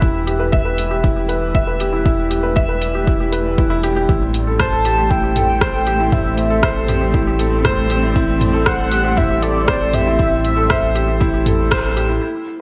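This excerpt from a piano and strings electronica piece moves at 118 BPM in a straight 4/4, driven by a deep, tape-warm electronic kick and a deep house kit of metallic hi-hats, rim clicks and toms whose hats, snare and toms pass through a low-pass filter. The mood is moving and melancholic, built on a shift from Em to Am7 at 4.1 seconds. A clear, woody upright piano, slightly detuned and up front, carries a riff with delay, while a dark, rumbling detuned saw bass pumps under sidechain compression. Behind them, a veiled, con sordino studio string section holds bowed chords with vibrato, fading in and pumping in the background. At 4.6 seconds a velvety synth lead with chorus and delay enters on the melody, and the band lands an accent at 11.7 seconds beneath light reverb.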